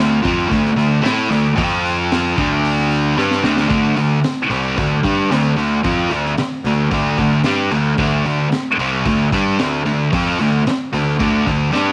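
Rowdy and swaggering, this garage rock cut moves at 112 BPM in a straight 4/4, taken from a longer piece. A thick, double-tracked fuzz guitar sits up front with a distorted riff built on D5 and F5 power chords, while a growly, overdriven picked electric bass anchors the low end from the very start. A crunchy breakbeat drum kit joins at 0.2 seconds, its high-tuned snare, tight kick and hi-hat sounding saturated and gritty with a rolled-off top. The arrangement shifts into a new section at 3.7 seconds, just after a drum fill that begins at 3.2 seconds, and another fill lands near 11.7 seconds before the cut ends. Light reverb and a small room ambience give the raw band sound a close, live-in-the-room feel.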